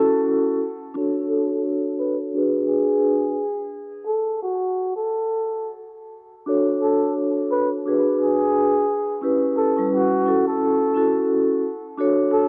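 Swung sixteenths at 87 BPM in 4/4 set a moody, gritty hip hop groove in B minor, where a breathy, veiled bucket-muted trumpet plays a whispered jazz solo with scooped notes over mellow soft-mallet vibraphone chords with slow motor vibrato, both up front, while a filter sweep runs from 1.0 to 12.0 seconds, a break falls between 3.7 and 6.5 seconds, and worn, warbling old tape and light reverb color this clip cut from a longer piece.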